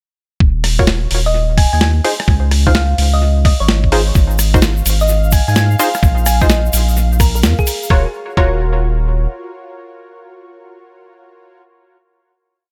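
An echo-heavy mix in digital ambience opens this skippy, soulful two-step garage piece in Eb minor at 128 BPM, its 16ths swung at 66%, where a gritty, thumpy, pitched-down kick sits up front with a thick, saturated sub bass playing a skipping syncopated line from 0.4 seconds. Sampler-style drums add a high-tuned snare with swung hats and rims under delay, while sparse, punchy sawtooth chord stabs in rootless voicings carry chorus, delay and a filter sweep, and a round, tine-like thumb-piano-style pluck offers short mellow answering phrases over Dbmaj9 and Bb7sus4. A grainy, close tube shaker and an ethereal, airy pad holding a high F5 in the background join at 4.2 and 4.4 seconds, before the groove gives way at 7.9 seconds to a final Ebm9 chord from the stabs.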